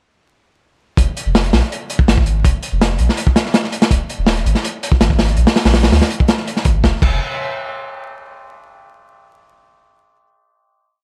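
A crunchy, heavily chopped breakbeat and a deep, round dub-style sub bass open this short, raw drum and bass and jungle piece together at 1.0 s, dropping straight in with a nostalgic mood under a bed of vinyl crackle. The saturated, up-front kit brings gritty snare hits, a tight kick, hi-hat and dark crash cymbals with a rolled-off top, while the mellow, sustained bass sits underneath. Both parts fall away by about 7.2 s, leaving a final note to ring until 8.3 s in a dry, close-sounding space.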